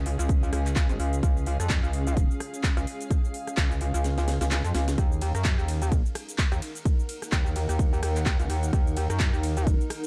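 Bass house at 128 BPM in Eb minor, aggressive and swaggering, with a 16th-note swing and a dark digital ambience. A metallic, saturated wobble bass sits up front with chorus and sidechain pumping, a punchy, tape-warm electronic kick drives up front alongside it, and a house kit adds cracking snare, metallic hats, handclaps, ride, rim clicks and shaker, while a cloudy, evolving granular pad blurs quietly with its own reverb and pumping. The kick drops out at 4.0 seconds for a drum fill before returning at 5.0 seconds as the harmony moves from Db to Ebm in this excerpt from a longer piece.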